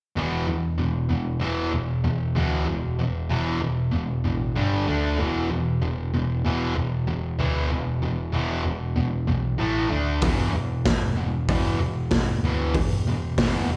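A bright, double-tracked fuzz guitar dominates this gritty, menacing garage rock excerpt, grinding out a distorted E-minor riff over power chords on E, G, D and A, underpinned by a dark, round hollow-body bass. A raw garage drum kit with a punchy kick, medium-tuned snare and hi-hat, saturated and rolled-off on top, enters at 10.2 seconds. The sound is that of a live club gig heard through the venue's PA, with small-room ambience and reverb around the band.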